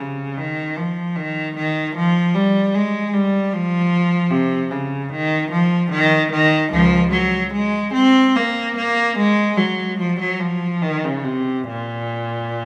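In a rubato 3/4 around 66-78 BPM, this solemn, grave baroque-style suite movement for unaccompanied cello features a single bowed player, rich and focused with vibrato, ranging from Db2 to C4, moving from F minor into Bb minor at 4.3 s, all set up front within a wet recital hall reverb that lingers about 1.7 s, a fragment cut from a longer piece.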